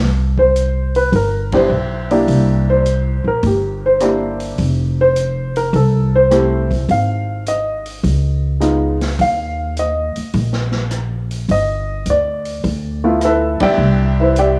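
A relaxed, sophisticated jazz piano trio excerpt in C major swings at 104 BPM, with a woody, pizzicato upright bass sitting up front from the start while an intimate baby grand piano carries the melody from 0.4 seconds, its short sustain and audible action noise coloured by cassette tape. A distant, roomy big-band drum kit of hi-hat, punchy kick, ride cymbal, rim click and snare sits low in the mix, and the band accents together at 1.4 and 13.5 seconds. Moderate spring reverb and studio ambience give the home cassette recording its homespun character, as the harmony moves from Cmaj7 through F, Db9 and G69 to close on Cmaj9.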